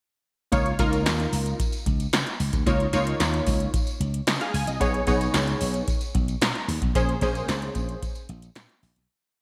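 A straight 4/4 boogie beat at 112 BPM drives this smooth, feel-good early-eighties boogie funk piece in Db mixolydian: an electro analog drum machine with a deep kick, a punchy snare layered with handclaps and metallic hi-hats under gated reverb, plus a jingly shaken tambourine set low in the mix. A fat, syncopated slap bass line with chromatic approach notes sits up front beside a detuned sawtooth and pulse-wave polysynth that pushes drop2 chord voicings through Db69, Cb69 and Bbm9, adding a filter sweep, chorus and short fills until 8.0 s. A lush hall ambience and bright 1980s-style digital production frame the verse, which fades out from 7.0 s to 9.1 s.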